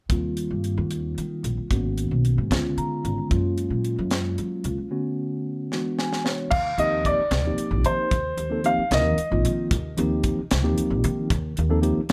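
A steady 6/8 groove drives this funky, slick excerpt of electric jazz fusion, with a crisp drum kit (high-tuned snare, punchy kick, airy crash and hi-hat) and a woody pizzicato upright bass holding the foundation under a mellow, clean tine electric piano that comps through rich extended chords and adds short fills, one of them alongside a drum fill just before 6.5 seconds. At that point a dark, smooth baby grand piano with long sustain and plate reverb steps forward with a brief melody until 9.5 seconds, carrying a vintage glow. The whole sound sits up front in light reverb, with the drums captured in a polished studio-room ambience.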